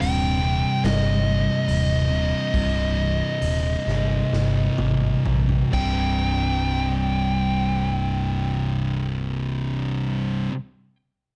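Brooding and ominous, this dry, dark stoner and doom metal fragment pairs two thick fuzz guitars grinding a low picked riff, one up front and one in the background, with a round, overdriven fingered bass and a compressed, distorted fuzz lead melody high above. As the tempo slows from the start, a raw garage drum kit with a punchy kick, gritty saturation and a rolled-off top plays a fill from 4.3 seconds before dropping out at 6.0 seconds.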